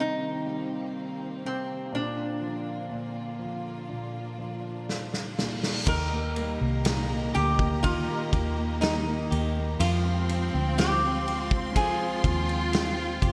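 A slow, straight 4/4 pulse at 61 BPM carries this hopeful, heartfelt pop ballad in Eb major, taken from a longer piece, where a bright, metallic, nasal resonator slide guitar sings the melody up front over intimate concert grand piano with a lush chorus, audible action noise and long sustain, all cushioned by woody, vibrato-rich studio strings. A loose, roomy indie drum kit with dark cymbals, a punchy kick and gated reverb enters with a fill at 4.9 s, and a background reverse cymbal leads into the new section from 5.3 s. From 5.9 s a round, foam-muted vintage bass, a dark background cello section playing a second line, and a very quiet, twangy direct-recorded clean electric guitar playing arpeggios fill out the glossy 1980s-style digital production and its lush hall reverb.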